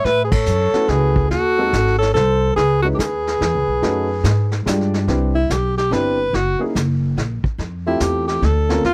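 A dry, close 1970s-style studio sound frames this sophisticated, warm small-group swing and bop piece in 3/4, opening with a band accent at 0.3 seconds as a clear, scooping alto saxophone leads up front over a woody pizzicato upright bass and dark-cymbaled brushed drums, joined at 0.7 seconds by a natural-toned baby grand piano, while a breathy, whispered trumpet with vibrato sits in the background until 4.7 seconds, and the saxophone takes a solo from 5.1 seconds over the continuing rhythm section.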